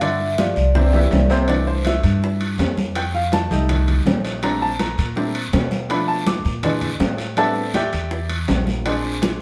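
Afro-Cuban jazz at 163 BPM in 4/4 with a straight feel, this sunny, danceable passage in C major is cut from a longer piece and has the sound of a band playing live in one room, wrapped in wet studio reverb. A mellow, dark vibraphone played with soft mallets, with a medium motor vibrato, carries the melody briefly before falling silent at 1.3 seconds, while a drum fill runs from 0.7 to 1.5 seconds. From 1.5 seconds the clear, present grand piano takes a solo over harmony that moves through colourful chords such as C69, Bbmaj13, Bm7b5 and Am11. Up front, a woody, growly upright bass with steel strings is plucked pizzicato underneath. Congas with a thick skin and hard hands sit compressed and saturated in the background beside round, low-tuned bongos, while ringing metal-shell timbales sound distant in a large room and a raspy guiro adds texture.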